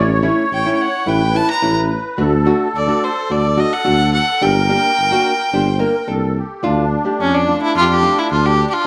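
Soulful and bittersweet, this klezmer fragment sets a clear, nasal violin melody with light vibrato and slapback echo up front from 0.5 seconds, over a reedy, shimmering musette accordion second line, a fingerpicked nylon-string guitar with audible finger squeak, and a dark, close-miked tuba bass, all in a moderate echo-chamber studio ambience.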